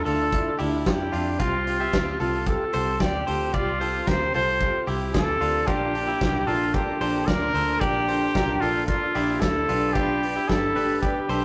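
A straight 4/4 groove at 112 BPM from a loose, roomy indie drum kit with a fat snare and tight kick drives this wistful, bittersweet jangly indie pop excerpt, where an intimate, breathy trumpet with vibrato and a soft attack carries the melody up front over a picked steel-string acoustic guitar with audible finger squeak, bright, twangy arpeggios on a direct-recorded clean electric guitar, a dark, foam-muted fingered electric bass and a reedy, overdriven combo organ tucked in the background, all moving through Dmadd9, Csus4, Bb and G in a rough rehearsal-room recording with tube saturation and a wet stone-room reverb.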